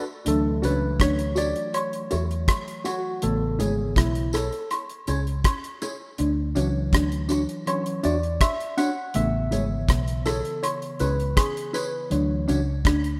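Sweet and romantic, this lovers rock reggae excerpt moves at an unhurried 81 BPM in a straight 4/4, swaying between Dmaj7 and Amaj7 chords. A tine electric piano, worn and slightly out of tune, sits up front through its built-in speakers and carries a solo across the section while also supplying the accompaniment. Beneath it, a vintage fingered electric bass with a foam-muted, round, dark tone holds the low end, and a damped 70s drum kit with a tight kick, hi-hat and rim click sounds dry and airy, touched with tape echo. A mellow electric guitar plays a compressed, clean riff bathed in spring reverb and tape echo, while a second mellow guitar adds phaser-tinged stabs from the background. Tambourine, woodblock, egg shaker and group handclaps give a band-limited, vintage shimmer, all set in a small room ambience with the rough feel of a home demo.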